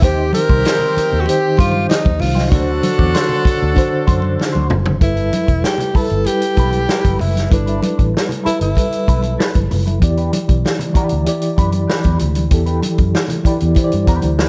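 A dry, close mix with a dulled top end frames this lush, smooth 1970s-style soul groove at 96 BPM in G major, cut from a longer piece. A breathy, intimate tenor saxophone carries the melody up front until 9.5 s, and a clear horn section adds soft-attack stabs until 4.7 s. Meanwhile a reedy electric piano with fast tremolo, a clean electric guitar riff with wah and spring reverb in the background, a round, punchy muted fingered bass, a tight vintage drum kit and very quiet, bright congas keep the groove going, with a drum fill leading into the second section at 5.0 s.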